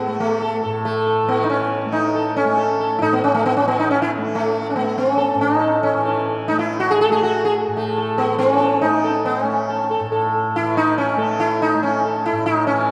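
A plectrum-plucked sitar carries the melody up front from the first moment, its buzzing tone ringing with sympathetic strings, while a mellow, softly plucked tanpura sustains a shimmering drone beneath it. This serene, devotional Hindustani classical passage in raga yaman sits in a straight four-beat metre. The long, wet reverb of a church or concert hall surrounds it, and the passage is cut from a longer piece.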